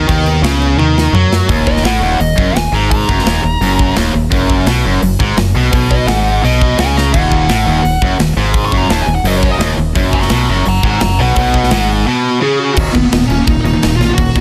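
Heavy metal in Eb minor at 170 BPM, aggressive and relentless, cut from a longer piece: two bright, picked distorted guitars drive the riff over a growling, punchy fingered bass and a tight, polished drum kit with bright cymbals, with a drum fill from 0.8 to 1.5 seconds and another at 7.0. A dark, high-gain lead guitar takes a solo from 1.5 seconds, while a very quiet, sul tasto string section with soft attack and light vibrato holds sustained chords at the opening and returns at 12.8 seconds as one of the rhythm guitars drops out. The mix is dense and heavily limited, with light reverb.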